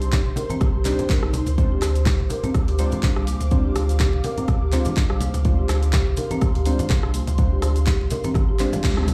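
A swung 4/4 afro house groove rides on a deep, layered electronic kick, a deep house kit of handclaps, dark hats, rim clicks and toms, and bright, close congas, with grainy maracas tucked in the background, all under a spiritual, warm mood. A round sine sub bass pumps beneath woody, rustic marimba arpeggios that carry dub echo, while soft, chorused chord stabs with a filter sweep and tape color sit back in the mix, moving from Cmadd9 to Dm7b5 at 1.6 seconds. An ethereal, detuned pad with tremolo and slow attack floats above, and the band hits an accent with a drum fill at 8.8 seconds to close this short cut from a longer piece.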